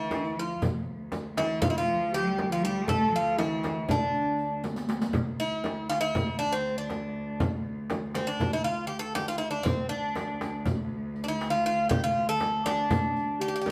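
Heard in a wet stone room with the band playing live together, this soulful, melancholic excerpt of a Turkish makam ensemble in D makam huseyni moves in 9/8 at 239 BPM counted in eighths, with an up-front, metallic, picked Greek bouzouki carrying the melody on doubled strings over a rich, even cello drone on D2, while a clear, earthy bowed chamber cello section and a dark, smooth-topped classical clarinet play second lines until the clarinet drops out at 4.6 s and the cellos at 4.7 s, and a crisp metal-shell darbuka, a close, dry frame drum struck with hard hands and a distant riq with bright jingles keep the pulse, capped by a drum fill that leads into the next passage at 5.2 s.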